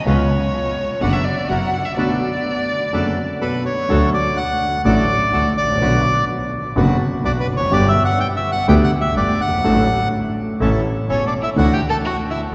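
A rubato 4/4 tango pulse at 125 BPM carries this passionate, elegant passage from a longer piece. An expressive bowed violin with vibrato and portamento opens in B minor over a mellow, intimate grand piano with audible action noise and deep bass, a clear, focused bowed double bass, and faint, bright bandoneon stabs. At 3.4 seconds a reedy, dark, up-front bandoneon takes the melody, just before the harmony turns to D major at 3.9 seconds, and the violin returns at 11.1 seconds, all bathed in a cathedral-like reverb from a church or concert hall.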